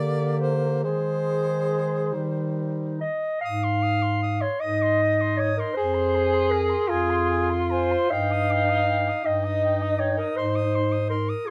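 Tender and lyrical, this short classical passage for single-reed quartet moves slowly in a rubato 6/8 at about 45-55 BPM in Ab major, with all four instruments sounding throughout its 11.5 seconds under light reverb. A warm, close-miked soprano saxophone with soft attacks and vibrato carries the melody, while a mellow, roomy clarinet adds a second line. A vintage-toned tenor saxophone with vibrato supplies accompaniment, and a dark, smooth-topped bass clarinet anchors the bass as the harmony arrives on Ab when a new section begins at 3.4 seconds.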